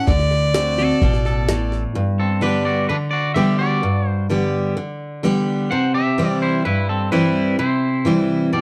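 A twangy, clean electric guitar with tape echo comes in at 0.8 seconds and carries a solo from 2.0 seconds to the close at 8.6 seconds, over a bright, full-bodied picked acoustic guitar that plays throughout this sunny, easygoing honky-tonk and classic country passage at 128 BPM in 4/4. At the start, a smooth, lightly vibrato fiddle holds the melody on D over a D7 chord, joined briefly by a woody, gut-strung pizzicato upright bass and a gritty, pitched-up sampler-style kit with a thumpy kick and high-tuned snare, all three stopping before 2.0 seconds as the harmony moves to G and then C at 5.7 seconds. The sound is dry and close, like a 1970s studio, with light reverb.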